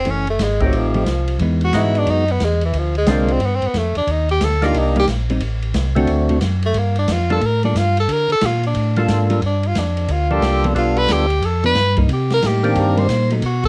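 Heard through a home cassette recording with light reverb, this excerpt catches a smoky, soulful soul jazz organ trio in G minor, swinging in 4/4 at 180 BPM. An edgy, forceful tenor saxophone solos up front for the full 13.7 seconds, while one tonewheel organ holds down the bass with a round, dark tone, key click and a slow rotary speaker, and a second organ, fat and lightly overdriven with third-harmonic percussion, adds melody from 0.6 seconds. A clean, compressed hollow-body electric guitar accompanies in the background, and an airy acoustic kit with dark cymbals, a medium-tuned snare and a boomy kick drives the swing as the harmony moves from F#m7 through Gm9 to Cm7.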